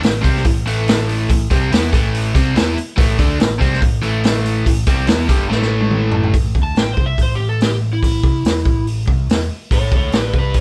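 A straight 4/4 groove at 143 BPM drives this swaggering, gritty slice of blues rock and southern rock, cut from a longer piece and played live in one room as a power trio with moderate studio reverb. A vintage acoustic drum kit sits up front with a punchy kick, medium-tuned snare and rolled-off top, under a growly overdriven picked bass and a bright, scooped, double-tracked overdriven electric guitar riff that holds the foreground until 6.3 seconds, when a drum fill hands over. From 6.6 seconds an overdriven slide guitar, played with fingerpicks, takes the melody for a solo that reaches as high as A5.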